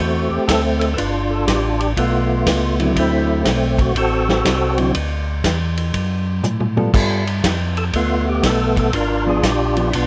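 A fat, lightly overdriven tonewheel organ opens this soulful, bluesy soul jazz trio at 121 BPM, its percussive melody with key click and chorus vibrato played through a slow rotary speaker, over a second, round and dark organ that carries the bass. A dry, up-front soul drum kit with a tight kick and rolled-off top enters at 0.5 seconds in a swung 4/4, and a clean, fingered hollow-body jazz guitar adds accompaniment from 2.8 seconds. The harmony alternates between D9 and G9, and after a drum fill at 6.4 seconds it returns to G9 before moving to a G#dim7 under light reverb.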